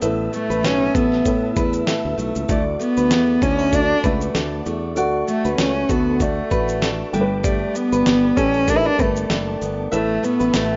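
Acoustic pop in D major at 97 BPM with a light 16th-note swing, carefree and easy-going, where a dark, bowed cello played sul tasto with light vibrato sings the melody up front from 0.3 s over a felt-muted upright piano, picked jumbo steel-string and fingerpicked nylon-string guitars with audible finger squeak in the background, a growly fretless bass, a gritty sampler-style kit with thumpy kick, fat snare and shaker, and a very quiet flute-like tonewheel organ with key click and fast rotary speaker, all in a rough home-demo mix with light studio reverb and a dull top end.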